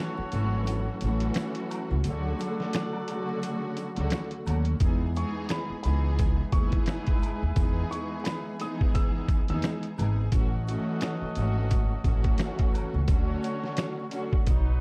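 Lush, bowed symphonic strings with vibrato open this nostalgic boom-bap hip-hop excerpt alongside veiled, cup-muted trumpet stabs in the background and a muffled, pitched-down sampler drum kit with a thumpy kick, joined at 0.2 seconds by a growly pizzicato upright bass up front and moments later by a distant tube shaker and woodblock, while a woody upright piano with audible action noise carries a brief, intimate melody from 5.2 to 10.3 seconds over a dark production dusted with vinyl crackle.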